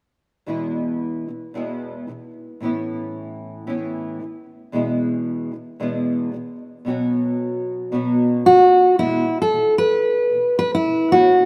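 A full-bodied, fingerpicked steel-string dreadnought guitar carries the melody and stands out most, though it arrives only at 8.5 seconds, sitting up front in the E4 to B4 range. Before that, a small, fingerpicked nylon-string guitar sets up the accompaniment from 0.5 seconds, double-tracked and placed up front, moving through E, Aadd9, E and Bsus2 before settling back on E at 9.0 seconds as a new section begins. This sunny, carefree acoustic pop piece moves at 113 BPM in 4/4 with a light swing on the sixteenths, in E major tuned slightly low to A4 = 435 Hz. A lush, wet hall reverb surrounds the two guitars, and the rough home-demo mix gives the warm sound an unpolished feel. The passage is cut from a longer piece and closes at 11.5 seconds.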